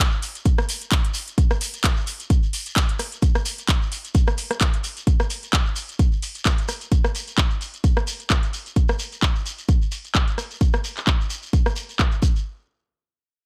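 A punchy, up-front electronic kick drives this bouncy, aggressive house excerpt at 130 BPM in 4/4 with a 56% swing on the sixteenths, entering at 0.5 seconds alongside a tape-warm, layered house drum kit of handclaps, rim clicks and metallic hi-hats dulled by low-pass filtering, while a grainy, mellow shekere sits further back in a digital ambience.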